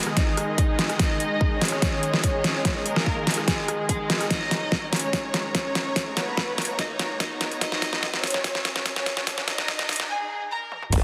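This menacing, heavy wobble dubstep excerpt opens on a lush studio violin section carrying the melody with vibrato and portamento through a low-pass filter and tape echo, over bright, detuned supersaw chords with 12-bit sampler grit and sidechain pumping, an overdriven drum kit with deep snare and metallic hats, and a punchy electronic kick entering at 0.2 seconds, all at a half-time 145 BPM in G# minor. A very quiet riser and sub drop arrives at 3.8 seconds as the build-up, drum fills and filter sweep drive toward a break at 10.1 seconds. A saturated, chorused formant-sweep wobble bass lands on G#1 only at 10.9 seconds, under a moderate plate reverb and a dense, heavily limited master.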